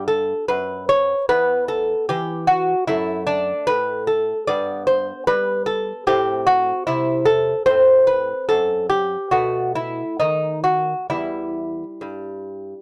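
A loose, rubato 4/4 pulse drifting between 65 and 76 BPM carries this grave, introspective baroque-style dance in E minor, tuned slightly high at A4 = 441 Hz and heard as a brief excerpt of a longer piece. A solo lute, fingerpicked and up front, plays across its full span from E2 to D5 for the whole 12.8 seconds, its delicate gut double courses and some octave-doubled strings giving a warm, acoustic tone. The harmony moves from E minor through G, A minor and B7 before settling back on E minor at 11.1 seconds, all captured in a dry, close 1970s-style studio sound with light reverb.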